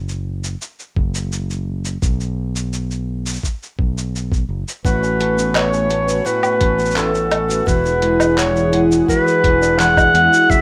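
A straight 4/4 pulse at 85 BPM opens this wistful, delicate folktronica excerpt, with growly overdriven fingered bass from the start, a muffled, pitched-down lo-fi sampler kit of handclaps, hi-hat, shaker and woodblock, and a thumpy overdriven electronic kick arriving at 1.0 seconds. Around 4.8 seconds a shimmering, octave-doubled twelve-string acoustic guitar enters with fingerpicked arpeggios and audible finger squeak, joined by an up-front, breathy clarinet melody with light vibrato, jazz-style phrasing and vintage 12-bit grit. A dark, slow-attack analog pad with chorus sits in the background from 5.3 seconds, all within a rough home-demo mix and a short plate and studio reverb, moving through B5, A69 and E9 chords.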